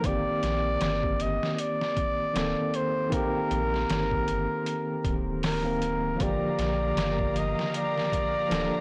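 A bucket-muted trumpet sings a mellow, scooped melody through dub echo over a tine electric piano with tremolo and tape echo, a round, tube-saturated sub bass, and a gritty, pitched-down sampler-style drum kit with a thumpy kick and overdrive, with veiled, con sordino violins adding lush sustained chords with 12-bit sampler grit from 6.2 seconds as the harmony moves from Cm7 to Gm7, all in a smoky, dark, swung trip hop passage cut from a longer piece, set in light reverb and a blown-out, overdriven recording with vinyl crackle.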